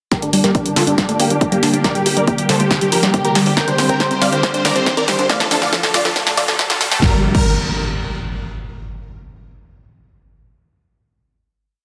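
Driving and bittersweet, this short uplifting trance piece is one long build that resolves onto a final chord at 7.0 seconds. A huge, euphoric supersaw lead sits up front, playing a repeating sixteenth-note riff over a pedal note in thirds and sixths, shaded by phaser, delay, sidechain pumping and a filter sweep. Beneath it a thick, chorused pad holds sustained chords in the background, while a detuned unison pluck runs a 32-step arpeggio sequence through its own filter sweep and delay. A heavy four-on-the-floor electronic kick and a techno kit with programmed hats, a punchy backbeat snare and crash carry a drum fill across the build, and a very quiet, galloping analog bass enters at 0.3 seconds. Electronic riser and impact effects begin at 1.2 seconds, and the mix sits in a lush hall reverb under a dense, heavily limited modern master.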